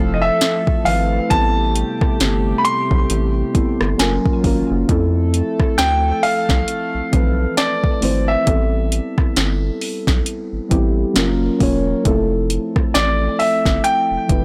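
A clear, polished baby grand piano carries the melody with digital delay over muted, felt-like synth keys, a rubbery square bass, a shimmering chorused pulse-width pad that holds sustained chords until 8.4 seconds, and a woody mallet-like synth pluck in the background, while an overdriven smooth R&B drum kit with a sharp snare enters at 0.4 seconds, giving this sensual, moody contemporary R&B excerpt, with its swung feel, a dry, blown-out finish as it moves through Fmaj7, Am9 and F#maj7.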